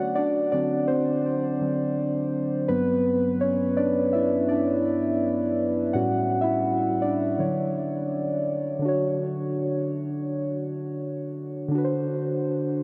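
Gently swung sixteenths in 4/4 carry this romantic, smooth R&B fragment, where a solo of muted, felt-like synth keys, dark and intimate and sitting up front with chorus and a diffuse ambient delay, drifts through D7, Gmaj7, A7 and Dmaj7 before returning to D7 at 11.7 seconds, all bathed in a huge, dreamy reverb.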